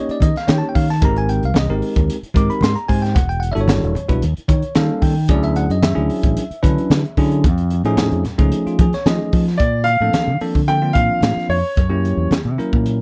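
A dry recording with little reverb frames this funky, soaring electric jazz fusion excerpt, which moves at 112 BPM in a straight 4/4. A bright, bell-like tine electric piano plays the accompaniment, clean through its built-in speakers and up front, over chords such as Eb7, Abmaj9, Em11 and Dmaj9#11, and it plays a fill from 4.2 to 5.3 seconds. A crisp acoustic drum kit sits up front in a small, pumping room, with a high-tuned snare, a tight kick and hi-hat. Beneath it, a fingered electric bass sounds direct and amped, while very quiet, low-tuned congas ring close by under hard hands. At 9.6 seconds the music moves into a new section on Bbmaj9, where a warm, boxy grand piano takes the melody, intimate and up front with audible action noise, before the harmony turns to Gb7b9.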